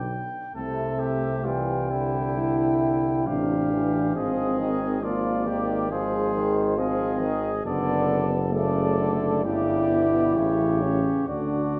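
A reverberant scoring stage wraps this brass quintet in a wet, spacious tail, giving the short excerpt, cut from a longer piece, a stately and warm mood at an unhurried, rubato pace in 4/4. A mellow trumpet with light vibrato carries the melody from a distance, while a second trumpet, also roomy and distant, adds a warm second line. The French horn, mellow and with vibrato, sits prominently in the accompaniment, and a brilliant, punchy trombone fills out the harmony from further back in the space. Up front, the tuba anchors the bass with a smooth top and a light vibrato. The harmony moves from G and C to a striking A-flat at 4.2 seconds, then turns through D/F#, Em7/G and A7 to settle on D at 11.3 seconds, with all five players sounding together throughout.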